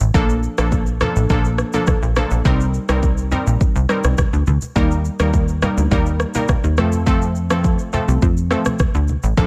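A punchy, funky analog bass and an electronic afro-pop drum kit with a deep kick, rim click, shaker and vintage 12-bit sampler grit open this breezy, sunny afrobeats cut at 104 BPM in F mixolydian. A glassy, detuned wavetable pluck with chorus enters at 0.1 s over Bbmaj7, Cm7, Eb and F, while very quiet, low-tuned acoustic congas sit beneath them in a digital ambience.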